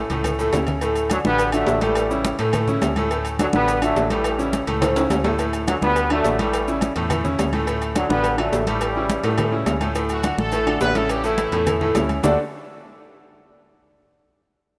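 An up-front, brilliant grand piano drives this festive, danceable salsa excerpt over a metallic FM bass, ringing agogo bells and timbales, close and dry congas, tight high-tuned cowbell and bongos and grainy maracas, while a clear, vintage trombone section carries the melody from 1.1 s until a punchy, distant horn section with vibrato takes over at 10.1 s, set in a lush hall reverb with a rough home-demo mix.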